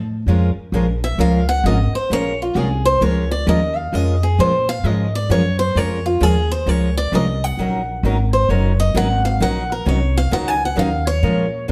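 A swinging 4/4 pulse at 131 BPM drives this virtuosic jazz manouche excerpt in Bb minor: a woody, thumpy pizzicato upright bass on gut strings starts at 0.0 seconds, and two picked steel-string guitars join as accompaniment at 0.3 seconds, one a parlour-sized instrument, the other a full-bodied dreadnought sitting in the background with audible finger squeak. At 1.0 seconds a bright, boxy swing-style lead guitar with fresh strings and a plate reverb takes the melody up front beside the bass, playing over a Bbm7 chord that moves to Ebm7 at 7.6 seconds. The whole group is heard from further back in a reverberant studio room.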